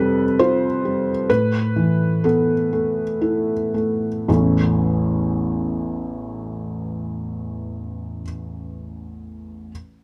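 Hopeful and tender, this brief neoclassical minimalist piano excerpt in A major and 3/4 drifts with a rubato feel between 56 and 72 BPM, as a solo felt-muted upright piano, mellow and intimate with audible action noise, sits up front in light reverb, slowing down through its opening 4.3 seconds as Fsus2 gives way to Asus2 before settling on A.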